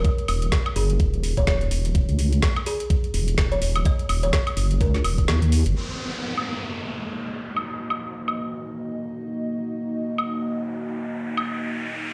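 A swung 126 BPM bass house groove in 4/4 opens with an overdriven, knocking electronic kick and a garage kit of metallic hats, woody snare and woodblock, while a nasal, wobbling vowel-sweep bass pumps up front in Eb minor and a hollow kalimba plucks a short melody through delay. The kick drops out at 5.3 seconds, and the second section settles on Ebm as a downlifter enters and a deep, detuned analog pad with chorus and sidechain pumping arrives, followed by a riser from 9.6 seconds. This aggressive, swaggering excerpt sounds as if played on a big system in a bare room, bathed in large studio reverb.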